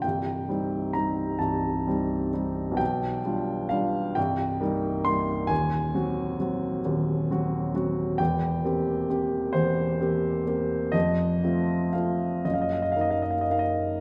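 A wet, reverberant scoring-stage space surrounds this wistful, melancholic romantic nocturne excerpt for solo upright piano, woody and intimate with audible action noise and long sustain, played up front at a slow 44 BPM in a rubato 6/8, spanning C1 to C6 across the full 14 seconds as the harmony moves from C minor through G7/B, Cdim/Eb and C7/E to F and finally Ebm/Gb.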